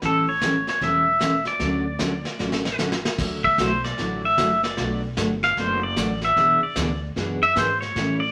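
A clean, compressed pedal steel guitar sits up front, played with fingerpicks and slide, with volume swells shaping its lines as it carries the melody and moves into a solo at 3.2 seconds. This playful, down-home western swing cut, taken from a longer piece, rides a swung eighth-note feel. Underneath, a dark, full-bodied dreadnought acoustic guitar is picked for accompaniment, while a woody, thumpy upright bass with gut strings holds down the low end in pizzicato. A vintage kit played with brushes, with dark cymbals, a tight kick and a rolled-off top, breathes in a pumping studio room and adds a drum fill at 2.4 seconds. The harmony moves from A7 to Dmaj7, then through Dadd9, Bm7 and E7/B, all set in a wet studio reverb.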